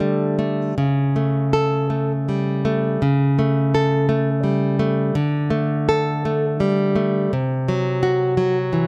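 A fingerpicked nylon-string guitar, full-bodied and up front with fresh strings, plays this nostalgic, romantic solo in D major, drifting through a rubato 6/8 at about 55 BPM in dotted quarters as it moves from D5 to A7/C# and back to D5 at 5.1 seconds before the harmony falls away at 7.3 seconds, all captured by close, detailed microphones with light reverb in a short, warm passage cut from a longer piece.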